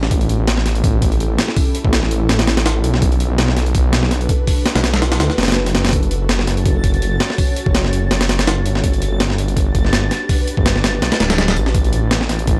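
A detuned saw bass sits up front, thick, beating and menacing, its tube saturation lending a heavy edge to this dark, nostalgic drum and bass cut with a jungle lean at 165 BPM, swung lightly on the 16ths. Beside it, a breakbeat sampler-style kit of hi-hat, thumpy kick and medium-tuned snare sounds compressed and gritty, with a tape-tinged character and studio ambience. In the background an ethereal, airy pad holds sustained chords through ensemble chorus, reverb and vintage 12-bit sampler grit, moving from A7 to Bm7, F#m, Gmaj7 and back to A7. At 6.5 seconds a reversed, granular texture enters high up, a dreamy, bright swell bathed in reverb. The overall sound is dry and rough-edged, like a hardware recording, and the passage is cut from a longer piece.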